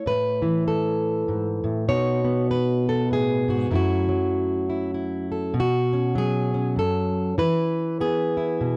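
A lilting three-beat pulse with a gentle swing on the eighth notes carries this short, wistful folk fragment, cut from a longer piece. A single fingerpicked, plugged-in steel-string acoustic guitar plays alone throughout, its jumbo body giving a full-bodied tone that sits up front and feels intimate. The harmony moves from Asus2 to B and F#m7 in the opening stretch, then shifts at 5.6 seconds into a second passage built on Bsus2 and E, ending at 8.8 seconds. The guitar spans a range from F#2 to C#5. A touch of studio reverb frames a dry, close sound in a 1970s studio style.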